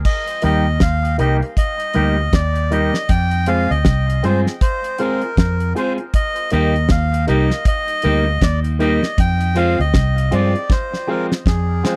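Laid-back and uplifting, this short roots reggae cut from a longer piece sways with a lazy swing as a round, punchy, foam-muted electric bass and a damped 70s drum kit with a fat snare and dark cymbals anchor the chords, which alternate between Eb and Fm. A reedy, breathy melodica carries the melody through dub echo, while a scooped electric guitar with an envelope filter, phaser and dub echo joins at 0.4 s alongside woody, slightly detuned upright piano stabs with audible action noise. The close, dry 1970s-style studio sound keeps the bass and drums up front, and a drum fill arrives at 10.7 s.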